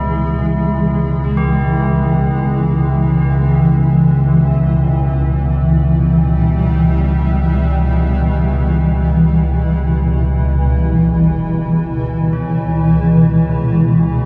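Soaked in a vast, dreamy reverb, this desolate and ominous dark ambient drone excerpt pairs an up-front, blurred granular cloud pad holding sustained chords with a deep, rumbling chorused drone, while airy, metallic tubular bells ring out solemn arpeggios through tape echo as they fade out over the first 11.0 seconds, and a huge, bright but very quiet impact lands at 11.0 seconds.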